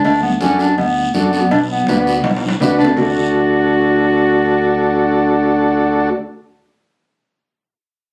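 Joyful and sunny, this short cumbia fragment, cut from a longer piece, moves in a straight 4/4 feel. A clear, close-miked clarinet carries the melody in a classical style over a bright, direct fingered electric bass, and a reedy combo organ with light vibrato enters at 0.4 seconds to sit up front in the accompaniment. Ringing cowbell and timbales, very quiet hard-hand congas with a thin, damped skin, and a raspy guiro drive the first half, with a drum fill from 2.2 to 3.0 seconds before the percussion stops at 3.1 seconds. The harmony moves from D6 to B minor and settles back on D as the second section begins, leaving clarinet, bass and organ to carry on. The sound has the roomy, club-like reverb of a phone recording made in the space, lending it a casual, live character.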